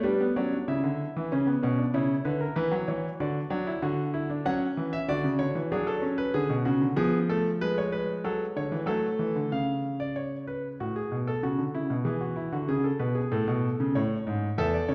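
Heard from further back in a reverberant recital hall with a long 1.6-second tail and softened highs, this stately yet joyful excerpt of a baroque-style three-part classical fugue features a smooth, vintage-toned solo grand piano at 95 BPM in 4/4, tuned to A4 = 439 Hz and ranging from E2 to F#5, opening in B minor before shifting at 9.5 seconds into a second section that moves from C#7 through F# minor and E to close on A.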